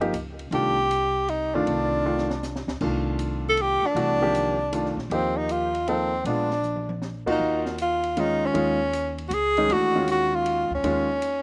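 A breathy tenor saxophone carries the melody from 0.5 s, up front with subtone, vibrato and scooped notes, its soft attacks trailed by a slapback echo, in this hypnotic, searching fragment of modal jazz swinging in 3/4 at 157 BPM. Beneath it, an intimate grand piano with audible action noise and its own slapback echo comps over Cm11 in C dorian, while a woody, thumpy pizzicato upright bass and a dark-cymbaled drum kit with a high-tuned snare and boomy kick fill out the groove, the drums adding a fill at 2.0 s. At 7.4 s the harmony shifts to Eb minor on Ebm11, all captured with a dry, outdoor sound.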